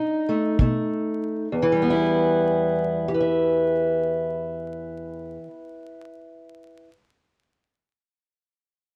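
A dry, close 1970s-style studio sound with vinyl crackle frames this mournful, smoky slice of acoustic country blues, cut from a longer piece and carrying a swung 4/4 feel. Up front, a dark, boxy parlour steel-string guitar carries the fingerpicked melody from 0.0 to 6.9 seconds, ranging from E2 to E5, while a tight, natural kick drum with brushes sounds briefly from 0.6 to 0.9 seconds. The opening slows down over a B7 chord before settling onto E minor at 1.5 seconds.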